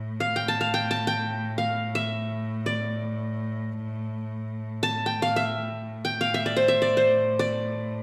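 In free time, this soulful, hypnotic excerpt of Turkish makam ensemble music in A makam ussak, tuned to A4 = 444 Hz, sets a clear, earthy bowed cello drone on A2 with light vibrato up front, while a bright-edged, plectrum-plucked qanun with triple strings joins at 0.2 s to spin a melody between C5 and A5, both carried by a reverberant recital hall that gives them a 1.3 s tail.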